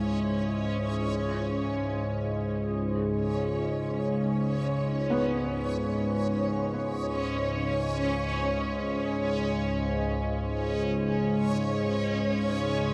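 Floating in free time, this dark ambient drone in C# minor sounds cavernous and unsettling, an excerpt cut from a longer piece. Up front, a calm organ-like drone sits low in the register, its sine-based unison tone thickened by ensemble chorus and a phaser. Alongside it, a reversed, swelling texture glimmers luminous and dreamy, with detuned triangle tones and granular grain under shimmer reverb. A deep, full-bodied sawtooth pad with a sub octave holds a C#m chord in the background, then drops out at 1.1 s as the harmony thins to C#5. Also in the background, a mellow, boxy baby grand piano plays intimate arpeggios with audible action noise, trailing into diffuse ambient delay. The whole mix rests in a huge reverb with an RT60 of 8.0 s and carries the worn, warbly pitch drift of old cassette tape.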